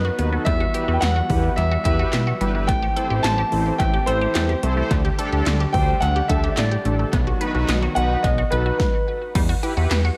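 A straight 4/4 pulse at 108 BPM drives this melancholic synth-pop excerpt in E minor, tuned to A4 = 436 Hz, where 80s electronic pad drums (punchy kick, gated snare, metallic hats, handclaps and crash, overdriven and echoed) sit under an up-front, fat, detuned analog bass. An open grand piano with long sustain carries the melody through tape echo, while mellow, round synth brass adds chorused accompaniment, a squelchy, resonant blip pluck runs phased arpeggios in the background, and a bold, warbling vintage pad holds chorused chords. The harmony moves from Emadd9 through Am7, Dsus4 and B before returning to Emadd9, with a brief stop from 8.8 to 9.4 seconds in a lightly reverberant, echo-heavy mix.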